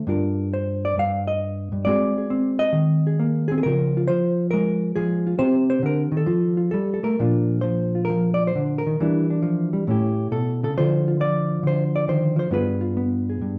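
Swung eighth notes in 4/4 give this brief solo jazz passage its lilt, though the pulse bends freely with rubato. A lone electric hollow-body guitar carries everything, played clean and fingered, with a dark tone that sits up front. The mood is sophisticated and playful, and the guitar ranges from G2 up to F5 as it moves through colorful changes such as Gm7, Ab7 and Dbmaj7. At about 7.2 seconds a new section begins, settling on Bb before drifting through Em7b5, A7 and Dm7 to a tense G7b9 at 12.5 seconds. The performance was captured live in one room, bathed in a lush, large studio reverb. Cut from a longer piece, it lasts roughly 13.6 seconds.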